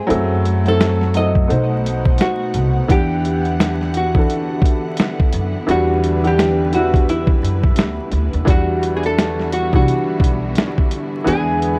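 Worn, warbling cassette tape with vinyl crackle and pitch drift wraps this hazy, nostalgic lo-fi hip hop excerpt in E minor, set at 86 BPM with a swung 16th-note feel and a moderate studio reverb. Up front, a gritty, overdriven sampler-style drum kit with a thumpy kick, medium-tuned snare and hi-hat sits beside a slightly detuned, woody upright piano. A pizzicato upright bass with a bright acoustic tone anchors the low end. A dark, clean, picked hollow-body archtop guitar carries the melody through tape echo, while a lush bowed string section holds smooth sustained chords in the background over a progression from F#m7b5 through B7b9 to Em9, turning to E7 at 11.3 seconds.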